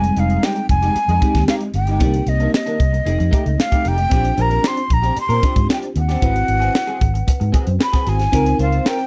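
Bittersweet and urban, this polished 1980s jazz-funk pop excerpt moves at 114 BPM in F minor, with a breathy, vibrato-laden jazz flute carrying the melody up front over a bell-like FM electric piano whose sparkling, warbling tone is bathed in lush chorus. An electric guitar at the edge of break-up plays a compressed, picked riff through analog chorus, while a dark, foam-muted fingered bass and a crisp fusion kit with a high-tuned snare and tight kick drive the groove through chords from Fm9 to Dbmaj13. The sound is dry and close, like a 1970s-style studio recording, with little reverb.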